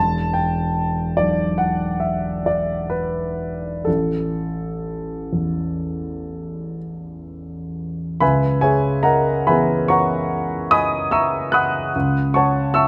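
A lone grand piano opens on an E minor chord, its tone warm and present, placed up front with a long sustain that lets each sonority hang in a moderate recital-hall reverb. This is nocturnal, wistful impressionist classical music in a slow, rubato 9/8, moving at roughly 40 to 52 dotted-quarter beats per minute. The harmony shifts to an A5 chord at 3.9 seconds, then at 8.2 seconds a new section settles into C# dorian on a C#m7 chord before closing on A6/9 over C#. The piano spans a broad register from E1 up to F#6, and the close, detailed miking captures it clearly within the hall's ambience. The instrument is tuned slightly high, to A4 = 441 Hz, and the passage is cut from a longer piece, ending at 12.9 seconds.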